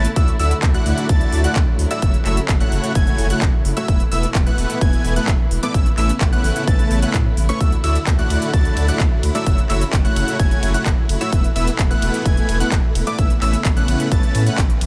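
Festival progressive house at 129 BPM in A major, this triumphant, euphoric excerpt pumps from the start with a lush, distant string section holding sustained chords, a catchy plucky lead spinning high arpeggios through dub echo, a huge detuned supersaw riff, and a deep, saturated sub bass, all pumping together. A crisp big-room kit of handclaps, hi-hat and ride cymbal plays from the outset, a punchy, up-front kick enters at 0.2 seconds, and the harmony cycles through Dadd9, F#m7, Esus4 and Aadd9 before a band accent lands at 14.6 seconds.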